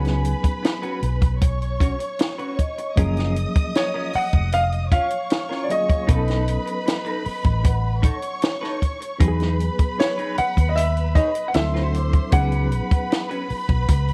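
A clear concert grand piano carries the melody across this smooth, lush 1970s-style soul excerpt, set at a relaxed 77 BPM in a straight 4/4. Beneath it, a compact cocktail drum kit sits up front with a dry, high-tuned snare, punchy kick and hi-hat, while a dark, round, foam-muted fingered electric bass anchors the low end. A reedy, worn electric piano, slightly out of tune and pulsing with fast tremolo through its built-in speakers, fills in the accompaniment, and a bright, twangy clean electric guitar picks a compressed riff coated in lush chorus. A distant string section adds an expressive bowed second line with vibrato and portamento. From 2.6 seconds, a metallic, ringing vibraphone struck with hard mallets glints in the background. The harmony drifts from C#7sus4 through F#maj7, B7, Emaj7 and D9 before returning to C#7sus4, all in a small room ambience.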